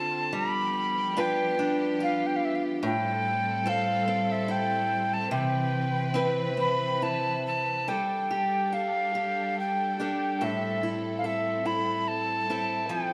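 Nostalgic and wistful, this Celtic slow air in 3/4 unfolds with a rubato feel, cut from a longer piece. A mellow tenor recorder carries the melody with an airy, wooden tone and vibrato, while a fingerpicked archtop guitar with bright, fresh strings and audible finger squeak supplies the accompaniment, and a clear symphonic string section holds sustained chords with light vibrato and a smooth top. A moderate scoring stage reverb surrounds the trio as the harmony moves from G7 through Am7 and Cmaj7 to Gsus2, with a new section arriving at 7.9 seconds.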